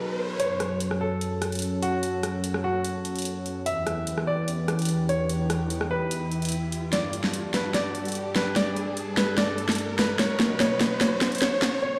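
Menacing and heavy, this half-time wobble dubstep build-up, cut from a longer piece, sets a polished grand piano melody with tape echo over a thick, detuned unison pad carrying sustained chords through chorus and vintage 12-bit sampler grit. An electronic riser runs beneath from the start, while a layered, up-front dance drum kit enters at 0.4 s with metallic hi-hats, rim clicks and a huge snare, then breaks into a fill at 6.9 s. The mix sits in a stone-room reverb, as if played on a big sound system in a bare room.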